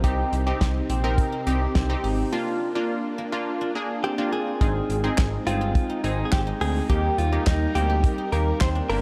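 This wistful, bright synth-pop excerpt in Eb major at 105 BPM opens with a dry, tight-kicked 70s drum kit with handclaps, hi-hat and snare, a smooth sawtooth synth bass up front, and a punchy, detuned funky polysynth comp carrying chorus and shimmer reverb. A vintage string machine playing violas, with ensemble chorus, holds sustained chords in the background, while a silvery, fingerpicked guzheng plays arpeggios through digital delay. A break runs from 2.3 to 4.6 seconds, and from 4.0 seconds a clean, compressed electric guitar recorded direct takes the melody with spring reverb, delay and shimmer, over chords moving Cm, Bb, Ab, Eb in a small room with light reverb.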